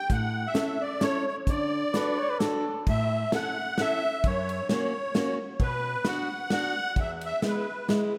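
Festive and jolly, this excerpt of an alpine folk dance in a swung three-time features a reedy, shimmering musette accordion carrying the melody up front over a fingerpicked steel-string acoustic guitar with audible finger squeak and a natural country drum kit with dark cymbals and a punchy kick, while a dark trumpet with light vibrato adds a brief second line from 1.9 to 2.9 seconds, all soaked in a dreamy, lush hall reverb.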